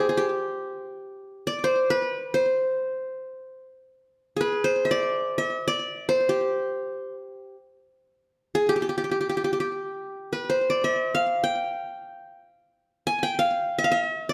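A solo qanun, plectrum-plucked with a bright-edged, triple-string sound, sits up front in this 14.3-second fragment of Turkish makam ensemble music, unfolding in free time in G makam hicaz between G4 and Ab5. A slapback echo clings to the qanun, and a moderate recital hall reverb surrounds it, giving the festive, stately playing a sense of ceremony. The opening material returns at 9.8 seconds.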